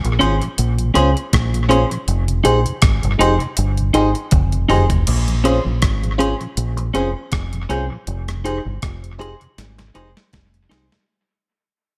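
A very quiet, flute-like tonewheel organ with a slow rotary speaker and a crisp, thumpy 8-bit drum machine treated with gated reverb and dub echo open this longing, bittersweet lovers rock reggae excerpt at 80 BPM in F minor, joined almost at once by a round, dark fingered dub bass up front, a glassy, bell-like FM electric piano with chorus, and twangy, compressed clean guitar stabs, all moving between Bbm9 and Fm7 chords in a light reverb, with drum fills at 4.3 and 9.6 seconds and a fade-out beginning at 5.1 seconds.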